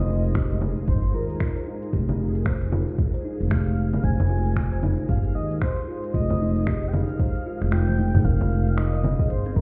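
A woody pizzicato upright bass sits up front in this meditative organic downtempo piece in F minor at 114 BPM, with a 16th-note swing, opening on an Fm11 chord. A dark, ringing kalimba plays arpeggios through delay, and a breathy, flute-like synth lead carries the melody with vibrato, chorus and delay over a mellow, ethereal pad that pumps softly in the background. An afro-pop kit of congas, finger snaps, crisp hi-hat, shaker and toms rides alongside a soft, overdriven electronic kick, which drops out at 7.7 seconds for a brief drum fill before a metallic bronze singing bowl rings in at 8.2 seconds, all heard muffled as if through a wall into a stone room.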